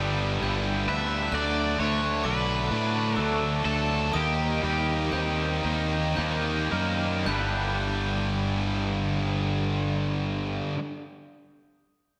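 A growling, overdriven fingered electric bass sits up front in this hopeful, euphoric post-rock passage in 6/8, cut from a longer piece. Above it, a cranked stack guitar carries the overdriven melody until 6.1 seconds, while two tight, bright distorted guitars play a picked riff with slapback echo. A very quiet, twangy clean electric guitar adds fingered arpeggios, and a glockenspiel struck with hard plastic mallets rings out bell-like arpeggios in the background until 7.8 seconds. A very quiet, shimmering, retro pulse-width pad with chorus holds sustained chords. The music slows down from 1.3 to 7.3 seconds, where a new section begins, and the whole piece is bathed in a lush hall reverb that gives it a big arena sound.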